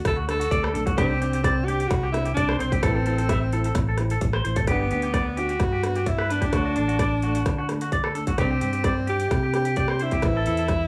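Sunny and joyful, this brief excerpt from a longer highlife guitar band piece moves in a straight 4/4 through chords of D, Csus2, Am and G. A clear, close-miked alto saxophone carries the melody up front with jazz-style vibrato, over a round, dark fingered electric bass and a tight, up-front garage drum kit of kick, metallic hi-hat and rim click that sounds tape-warm and re-recorded in a small room. Bright, twangy picked arpeggios on clean electric guitar sit above a fingerpicked nylon-string guitar in the background, its finger squeak audible, all captured as a band playing live in one room with moderate large studio reverb.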